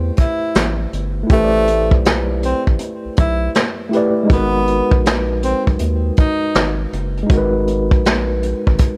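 Reflective and nostalgic, this short lo-fi hip hop excerpt with a swung 16th-note feel sets a breathy, close-miked tenor saxophone with scooped notes and tape echo up front over a worn, slightly out-of-tune tine electric piano, a round, deep analog bass, and an up-front vintage brush drum kit whose hi-hat, tight kick and medium-tuned snare sit in a small room with a rolled-off top, moving from Am7 to G#m7 at 4.3 seconds.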